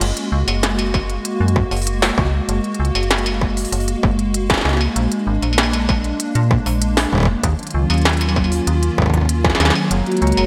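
A metallic FM bass with a fast, decaying attack and tube saturation sits up front in this wistful, intricate IDM excerpt at 97 BPM in Gb major, moving through Gbadd9, Bb7 and Ebm7 beneath a hollow, flute-like pad whose detuned, warbling chords carry an ensemble chorus. An industrial kit of clanging snare, crisp hats, crash and struck metal runs throughout, joined at 0.9 seconds by a distorted electronic kick, while near the close a pulsing, tempo-synced gated texture murmurs in the background and a dark, ringing vibraphone with medium hard mallets begins arpeggios through digital delay at 10.1 seconds. The bright 1980s-style digital production wraps the parts in a lush hall reverb.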